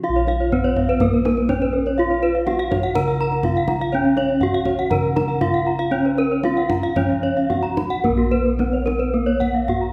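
A hypnotic, brilliant excerpt of Balinese gamelan opens with an up-front bronze metallophone carrying the melody in ringing, shimmering paired tuning struck with a wooden mallet, over mellow, softly padded bossed gongs on the bass and bright horn-mallet metallophone arpeggios, while a deep, close kendang drum enters at 0.2 seconds and a second, dry, close-miked arpeggio metallophone joins at 0.3 seconds, all set in the wet bloom of a recital-hall reverb.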